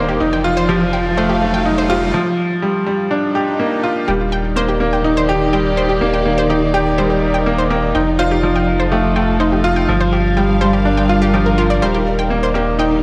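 Intimate and melancholic, this piano and strings electronica moves at 124 BPM in a straight 4/4, heard as a cut from a longer piece. A bright upright piano sits up front with a riff, its worn, slightly detuned tone carrying audible action noise and passing through digital delay and shimmer reverb. Beneath it, a dark studio string section holds lush bowed chords with vibrato and a smooth top, while a deep, round sine sub bass sustains the low end and an analog pluck spins sawtooth arpeggios treated with chorus, delay and shimmer. An electronic riser and swell in the background drive a build-up over the opening 4.1 seconds, leading into the drop that runs to the end. The harmony cycles through F7, Gm7 and Ebmaj7, framed by a wet echo chamber reverb and small room ambience in a dark, warm production.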